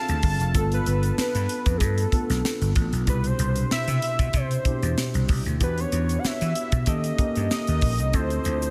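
Bittersweet and slick, this short excerpt of polished 1980s jazz-funk pop sets a fat, detuned sawtooth lead with vibrato and tape echo over a worn, slightly out-of-tune tine electric piano with subtle chorus, a growly, punchy slap bass and a tight, dry funk kit with a high-tuned snare up front, while a grainy tube shaker sits very quietly beneath chords moving from Dm7 through G9, Cmaj7 and D#7#11 in a small, lightly reverberant room.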